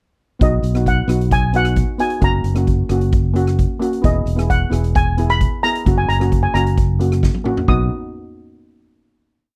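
A sunny, festive calypso with a dry, close 1970s studio sound: a mellow, shimmering lead steel pan, played with soft rubber sticks, carries song-like motifs up front, while cello pans add airy, syncopated triad chords. A direct fingered electric bass plays a syncopated figure, and a polished street-band drum kit with a boomy kick and medium-tuned snare keeps a calypso groove. A drum fill at 7.2 seconds leads into the final chord at 7.7 seconds.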